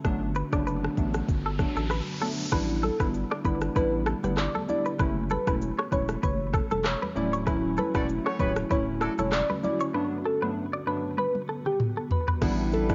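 Afrobeats at 97 BPM with a breezy, romantic mood, cut from a longer piece and heard through a lo-fi cassette haze with light reverb. Up-front electronic drums with a deep kick, a thick saturated sub bass and round, detuned analog keys with chorus set the groove, while a cloudy granular pad drifts in the background and a twangy clean guitar riff with tape echo enters at 0.4 seconds. An electronic riser leads into very quiet congas at 2.5 seconds, a gentle FM lead carries the melody from 2.8 seconds, and a distant, roomy horn section with light vibrato adds a second line from 7.9 seconds. All of this sits over chords moving from Gmaj7 through A9sus4, F#m7 and Dmaj7, and a drum fill arrives at 11.2 seconds.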